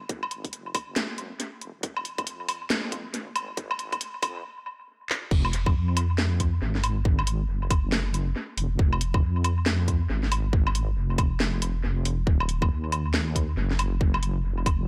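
Drenched in echo over a light reverb, this heavy, dark deep dubstep fragment pairs a detuned, chorused wobble bass of sawtooth and sine with a tight, room-recorded electronic kick and a garage kit of cracking snare, hi-hat, handclaps, woodblock and crash cymbal, the swung half-time groove building until a stop at 4.4 seconds, a drum fill at 5.1 seconds and the drop at 5.3 seconds.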